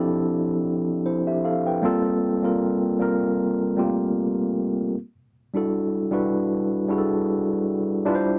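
Late-night and introspective, this short R&B fragment, cut from a longer piece, features a solo tine electric piano with a warm, clean tone heard through its built-in speakers and placed up front. Moving through minor eleventh chords over a gently swung 4/4 feel, it sits in a dry, close 1970s-style studio sound with light reverb.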